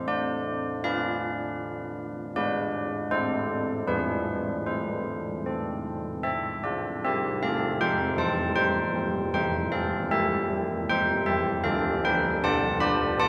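In a steady, straight three-beat lilt, this wintry, solemn classical tune for church bells unfolds as a brief fragment of a longer piece, played entirely by a solo set of old church bells. The bells sound bronze and clangorous, with a pronounced minor-third overtone, the strike of an iron clapper and a beating shimmer, captured close and full, up front, inside a moderate scoring-stage reverb. The opening phrase dwells in a somber minor mood before turning toward a brighter major color at 7.0 s, carrying on until 13.3 s.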